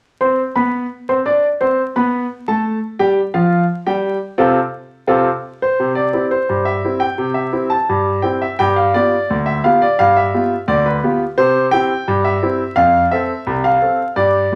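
A straight 2/4 pulse at 86 BPM drives this cheerful, jaunty ragtime piano piece in C major, tuned slightly low to A4 = 439 Hz. A solo grand piano plays from 0.2 to 14.6 seconds, covering a span from C2 up to D6, with a smooth, vintage tone placed up front. The opening passage moves from Amadd9 to F, and a second passage arrives at 5.8 seconds, running through C, G7, C and F. A wet club reverb gives the room a short sense of space, and a layer of vinyl crackle adds an old-record patina. The clip is cut from a longer piece.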